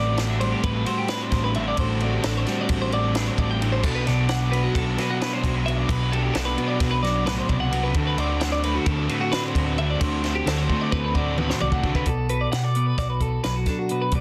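Math rock and midwest emo in 9/8 at 262 BPM counted in eighths, this bright, intricate excerpt moves through D7sus4 over A, Bm7 and D7 before landing back on Bm7 when a short new section arrives at 12.1 seconds. A twelve-string electric guitar spins arpeggios in a high register, its bright, twangy tone colored by spring reverb and tape echo, while a clean electric guitar with a warm, compressed sound fills in the accompaniment below. A dark, double-tracked overdriven guitar carries a gritty riff until 12.1 seconds, when it drops out. Underneath, a hollow-body short-scale electric bass gives a round, amped low end, and a compact cocktail drum kit with a high-tuned snare, tight kick and dusky cymbals plays dry and natural, entering at 0.2 seconds and rolling through a fill just before the section change. The mix sits in a light reverb with a dense, heavily limited modern master.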